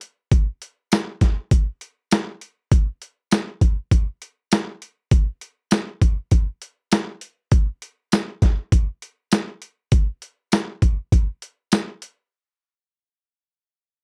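A dry, close recording with a 1970s studio feel opens on a soulful, smoky blues groove at 100 BPM in 4/4, with a light swing on the sixteenths. The boom bap sampler-style drum kit sits up front, compressed, pitched down and overdriven, with a thumpy kick, a high-tuned snare, hi-hat and tambourine carrying a gritty, small-room character. The drums play until 12.2 seconds, and the piece moves into a new section at 12.3 seconds in this short cut from a longer work.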